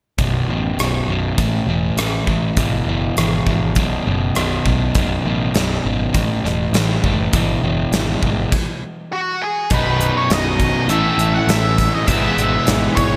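Sunny and driving, this classic rock excerpt moves at 101 BPM in a straight 4/4, rooted in B mixolydian with a big arena sound and a lush hall reverb. A crunchy, overdriven guitar riff sits up front from the start, alongside a bright, punchy picked electric bass and a gated 80s drum kit with a tight kick, medium-tuned snare, rim clicks, hi-hat and bright crash cymbals in a polished stone-room ambience. The opening cycles through B5, A5 and E power chords before everything halts for a stop at 8.5 seconds. At 9.1 seconds a dark octave-fuzz lead guitar cuts in with a wah-tinged, slapback-echoed melody between F#4 and F#5. From 9.7 seconds the second section brings full chords of B, A and E/G#, a tight, distorted guitar playing its own riff in the background and a very quiet, full-bodied jumbo acoustic guitar picking underneath.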